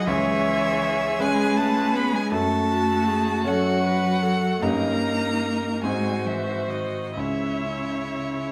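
Melancholic and solemn, this 8.5-second excerpt from a slow romantic piano quintet movement in C# minor moves in rubato 6/8 at 42-54 BPM, with a rich, expressive violin up front singing the melody with vibrato and portamento over a focused cello line and a distant second violin that also uses vibrato and portamento, while a clear, polished concert grand with deep bass and long sustain and a smooth, even viola carry the accompaniment through a chord path from C#m to F#m, D#7/G and G#7 before settling back on C#m, all set in a recital hall's wet reverb.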